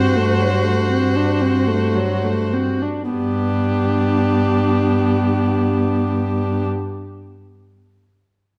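A single bowed violin carries the melody in this tender, serene slow movement for string quartet, its rich, focused tone singing with vibrato and a smooth top. A second violin plays an inner line in a rich, smooth, even voice, while the viola fills in the accompaniment with a rich, smooth sound. The cello holds a low bass note throughout, bowed with vibrato and sitting up front in the mix with a focused tone. The pulse is freely flexible in a rubato feel, slowing through the opening bars as a D7 chord over a G bass gives way to a plain G chord at 3.1 s. A moderate recital hall reverb and a dark, warm production lend the quartet a serene calm, and the passage is cut from a longer piece, ending at about 6.7 s.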